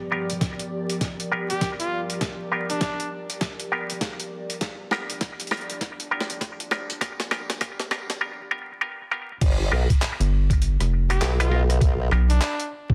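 Glitch hop at 100 BPM with a playful, funky swing, built on a G7#9 chord: warbly, nostalgic tape-like and airy, breathy pads pump under chorus while a twangy muted clav stabs through auto-wah and delay, gritty pitched-down boom bap drums with a thumpy electronic kick drive a build-up and drum fill, and a clear, close-miked jazz trumpet sings at 1.5 s and returns at 11.1 s. A break at 8.2 s gives way to a drop at 9.4 s, where a saturated formant-sweep wobble bass arrives up front, joined at 10.2 s by a rubbery, hollow square bass, beneath vinyl crackle and light reverb in this dense, heavily limited excerpt.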